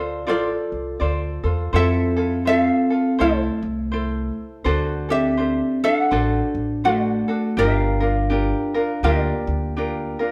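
A fingerpicked tenor ukulele carries the melody up front in this sunny, languid Hawaiian excerpt, its acoustic tone light and warm. Beneath it, a vibraphone played with soft mallets and the motor off adds a mellow, ringing second line with a warm, metallic character. A second ukulele, also fingerpicked and up front, supplies a bright accompaniment, while a pizzicato upright bass on steel strings gives a woody, thumpy, dark foundation. The band plays live together in one large room with a generous reverb, and the eighth notes carry an easy swing in four. After a brief opening on Dm7, the passage moves into a new section at 1.7 seconds, passing through Fmaj7, D7 and Gm7 before it is cut off.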